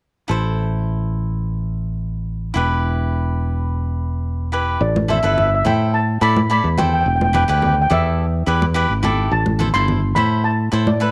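Cool and brooding, this calypso passage, cut from a longer piece, moves at an unhurried straight four-beat pulse in a minor mode. A bright, crisp picked cavaquinho and a growly, punchy fingered electric bass open together at 0.3 seconds, the bass sitting up front and direct while the chords shift between Am and Em. At 4.8 seconds a lead steel pan enters with the melody, its metallic, shimmering tone softened by rubber sticks and placed in a boxy small room. Moments later, at 5.0 seconds, close and dry congas join in the background with a ringing, medium-tuned sound. The harmony colours slightly in this second stretch, moving through Amadd9 and Em7 before settling back on Am, all framed by light reverb and a touch of studio ambience.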